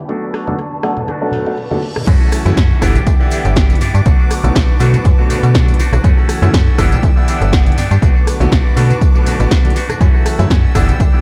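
Filtered disco house in B minor at 121 BPM with a swung 16th-note feel, nostalgic and funky, this excerpt from a longer piece opens on a filter sweep where a lush, bowed violin section holds sustained chords in the background, a twangy envelope-filtered electric guitar with sampler grit and tape echo plays a riff, a brilliant grand piano with phaser and audible action noise accompanies, a punchy analog drum machine with tape-warm snare sets the groove, and distant, very quiet tambourine and congas ring out, before a reverse cymbal at 1.5 s leads into the drop at 2.1 s, where a snappy, metallic slap-like FM bass with tube saturation and a dry, up-front electronic kick enter over Bm7, F#m7 and Em7/G chords, the violins, guitar, piano and bass pumping against the kick in an echo-heavy mix.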